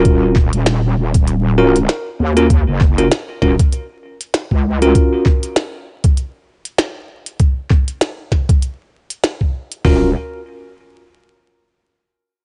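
A dry, gritty recording with vinyl crackle and a dulled top end opens this playful glitch hop excerpt, which sits at 98 BPM in 4/4 with a 16th-note swing, in Eb minor around an Ebm9 chord. A bell-like tine electric piano plays bright, clean stabs from the start, carrying vintage 12-bit sampler grit, sidechain pumping and tape echo, then drops out at 5.3 seconds before returning briefly near 9.8 seconds. Beneath it, a heavy, resonant wobble bass with chorus and overdrive holds the low end until 4.9 seconds and also comes back for a short burst at 9.8 seconds. A pitched-down, compressed boom bap sampler-style kit drives the groove with a thumpy kick, toms and hi-hat, while a second, glitchy electronic kit layers a tiny snare and clicky hats on top. Both drum kits sound tape-warm and sit up front, giving the piece a gritty, lo-fi character.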